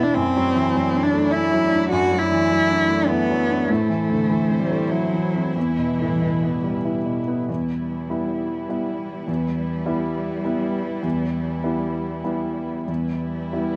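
An expressive bowed cello, warm with vibrato, portamento and a soft attack, sings a second line up front over a clear, intimate grand piano whose long sustain and audible action noise carry the accompaniment, while a quieter chamber string section holds focused, smooth-topped chords in this melancholic, longing neoclassical excerpt in E minor, a rubato 3/4 at roughly 91-104 BPM moving through Dadd9/F#, Am and Em before turning to a new passage at 7.5 s, heard as a dry, close 1970s-style studio recording with small room reverb.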